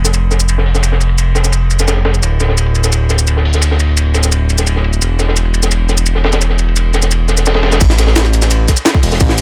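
Melancholic and rolling, this liquid drum and bass passage, cut from a longer piece, rides on a smooth, up-front synth bass of detuned sawtooth and square waves with a moving notch and sustained, fast-attack notes. Beneath it, a dark, saturated breakbeat kit from a small room, with filtered cymbals, hats and a high-tuned snare, blends with a compressed, pitched-up jungle sampler-style kit whose gritty, tape-toned crash, hi-hat, shaker and snare sit up front. At the drop at 7.8 seconds, a tight, layered electronic kick enters, all in a dry mix with little reverb.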